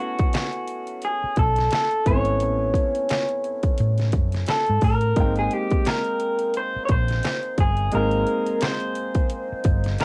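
R&B and neo-soul with a sensual, relaxed feel at 87 BPM and a swung sixteenth-note groove, this short cut features a slightly broken-up, picked electric guitar melody through a small old amp up front, a natural-toned grand piano accompanying softly beneath, a punchy, layered pop drum kit with handclaps, metallic hats and a deep snare entering at 0.2 seconds, and a dark, round hollow-body bass joining at 1.2 seconds, all over an Amaj9 to Abmaj9 move with a lo-fi cassette tint on the guitar, piano and drums and little reverb in a home-recorded sound.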